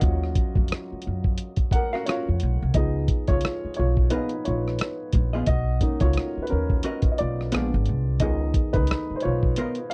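An 88 BPM groove in 4/4, with a light swing on the 16ths, sets up this introspective, smooth R&B and neo-soul passage cut from a longer piece. A compressed, sampler-style drum kit with a gritty, thumpy kick, hi-hat and rim click sits up front alongside a woody pizzicato upright bass, and both play from the start. The dark upright piano carries a mellow solo across the whole passage, moving through Ebm9, Db9, Bmaj9 and Bb7b9 before arriving on Db13. At 1.9 seconds a clean, hollow-body electric jazz guitar enters with a picked second line. The sound is dry and close, in the manner of a 1970s studio, with little reverb and a tape-warm character to the drums.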